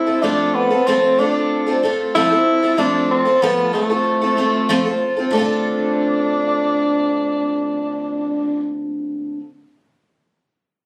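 A straight 4/4 pulse at 94 BPM sets a rock feel in D minor, and the mood is wistful and reflective. A picked twelve-string acoustic guitar carries the accompaniment up front, its bright, shimmering, octave-doubled tone ringing over an F chord before the harmony moves to Dm7 at 5.3 seconds, where a second section begins. Above it, a breathy tenor saxophone takes the solo melody in a mellow pop style, with subtone warmth, scooped notes, light vibrato and a smooth, punchy top, set off by a slapback echo. The saxophone falls away at 8.7 seconds, and the guitar carries on briefly to 9.4 seconds. Captured on a phone in the room, the fragment has a club-like ambience with light reverb and a compressed sound.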